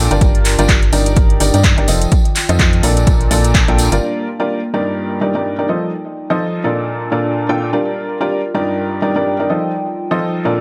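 Piano house at 126 BPM in G minor, with a 16th-note swing, this bittersweet, energetic passage is cut from a longer piece. An up-front, woody upright piano carries the riff throughout, its slightly detuned, worn tone colored by tape echo and sidechain pumping, while a warbling, lo-fi pad sits in the background with chorus and its own reverb, pumping along beneath. For the first 4.0 seconds, a hollow, organ-like FM bass with tube saturation drives the low end, joined by an overdriven, punchy electronic kick, a house kit of handclaps and metallic hats, and a distant tambourine set back in a large room. By 4.0 seconds the bass and percussion have dropped away, leaving piano and pad to carry the second section on their own. The harmony cycles through Gm7, Ebmaj7/G and F7, with a Bbmaj7 arriving at 6.6 seconds, and a light reverb rounds out the mix.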